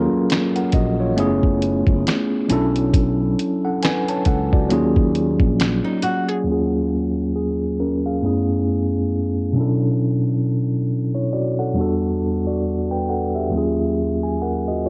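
Reflective and melancholic, this lo-fi hip hop fragment moves at 68 BPM with swung sixteenths, led by a clean, up-front tine electric piano heard through its built-in speakers as it cycles through minor-eleventh chords from Ebm11 to Gbm11, Bm11 and Em11. A bright, direct fretless bass holds the low end until 5.8 seconds, when a brief fingerpicked flamenco guitar line slips in, while a muffled, pitched-down sampler kit with a thumpy kick, medium-tuned snare, hi-hat and finger snaps plays until 6.5 seconds; once the guitar fades at 6.7 seconds, the piano carries on alone. The home cassette recording, low-pass filter and light reverb lend the whole a soft, worn veil.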